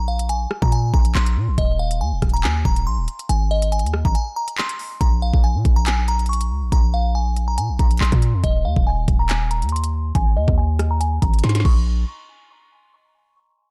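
Tense and ominous, this drill cut from a longer hip hop piece moves at 140 BPM in 4/4 with a half-time feel, tuned slightly sharp at A4 = 441 Hz. A delicate, tinkling FM synth tine bell carries the melody, its bright, decaying notes shimmering with chorus and softened by a low-pass filter. Beneath it, a punchy, heavy 808-style bass with a sine core and a noise layer hits up front alongside an electronic, overdriven drill kit: knocking kick, woody snare, crisp hi-hats, rim clicks, handclaps and crash cymbal. After a break at 4.2 seconds, a filter sweep runs on the bell from 5.0 seconds, and a drum fill at 11.4 seconds closes the phrase. The harmony moves through Bbsus2, Ab, Ebsus4 and Bbm with chordless stretches between, all in a dry, close-sounding mix with little reverb.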